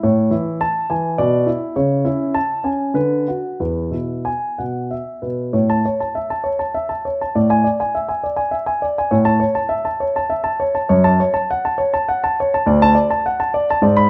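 A warm, up-front grand piano plays alone throughout this radiant, dance-like baroque-style suite movement in A major, moving in 3/4 at 91-104 BPM with supple rubato, ranging from D2 to B5 and set in a moderate large-studio reverb, with a second section beginning at 5.5 seconds before the excerpt breaks off at 14.1 seconds.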